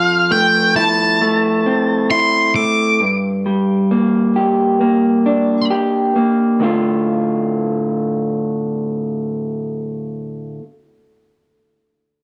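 An octave-fuzz lead guitar and an electric guitar through a small old amp open together in this brooding, cinematic rock passage at a slow 67 BPM in D minor, the lead singing a distorted melody up front with slapback echo until 5.7 seconds while the slightly broken-up, lo-fi guitar picks compressed arpeggios over Fmaj7 and Gm before settling on Dm at 6.6 seconds, all set in light digital ambience with a dark production.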